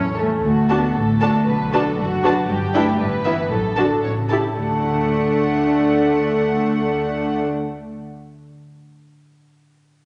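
A playful, whimsical cinematic film cue in D major, this short passage cut from a longer piece moves at 116 BPM in a straight 2/4 with a mischievous, quirky mood. A concert harp rings out fingerpicked arpeggios from the start, joined at once by a violin section carrying the melody with a pure, floating sul tasto tone and a soft attack, over a dark double bass section bowing the low line. At 0.2 seconds a second violin section adds a shadowy, intimate second line with light vibrato, while an up-front viola section supplies accompaniment and a cello section, close yet set in the background, adds a further bass line. The harmony travels from D through Bm7, G6, Em/G and D/A to A7 before landing back on D at 4.6 seconds, where a brief new section begins. The strings stop at 7.4 seconds, leaving the harp ringing alone until 8.5 seconds, all wrapped in the lush reverb of a scoring stage with a softened, rounded top end.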